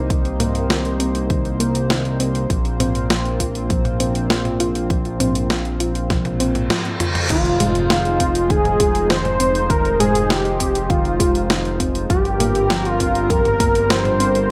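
Bathed in a moderate digital room reverb, this moody, driving synthwave piece in F minor at 100 BPM sets a shimmering, retro pulse-width pad and a fat, tube-saturated analog bass, both pumping to the sidechain, under soft, round pluck arpeggios with chorus and delay, a punchy, layered electronic kick and a clean 12-bit drum machine with an up-front snare, hi-hat, toms and crash, before a drum fill and a background reverse cymbal lead into an electronic impact at 7.3 seconds, where a thick, bold unison lead with vibrato and digital delay takes up the melody.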